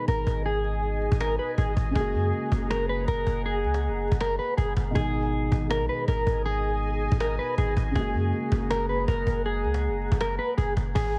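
A clean, dark electric guitar sits up front carrying the melody, its fingered lines colored by phaser and digital delay over a melancholic, brooding trap beat at 160 BPM in a half-time feel. Beneath it, a deep, boomy 808-style bass with a sine core, a noise layer and a fast, decaying attack anchors the low end, while a dark, boxy concert grand piano with long sustain fills out the accompaniment. A moody, evolving ambient pad built from detuned sawtooth and sine layers with a sub octave hangs in the background, its slow attack and long release softened by chorus and its own reverb. Percussion comes from a woody cajon played with hard hands and faint snares, roughened by vintage 12-bit sampler grit and a band-limited tone. The chords move between G#m and F#add9, the hi-hats drop out at 11.0 seconds as a faint electronic downlifter slips in, and the whole fragment carries a heavily compressed, radio-like sound with light studio reverb.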